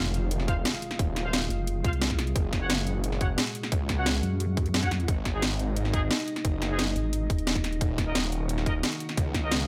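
A very quiet electronic impact opens this dark, mechanical excerpt of technical drum and bass at 176 BPM in F phrygian, where a snarling, detuned distorted saw bass growls up front over an eerie metallic drone with 12-bit sampler grit in the background, a drum kit of cracking snare and bright hats enters at 0.1 seconds before a tight, overdriven electronic kick joins at 0.5 seconds, clear brass ensemble stabs with light vibrato ring through digital delay, and a nasal vowel-sweep wobble bass enters at 1.5 seconds as the chords move from Fm through Gbadd9 and Ab to Ebm.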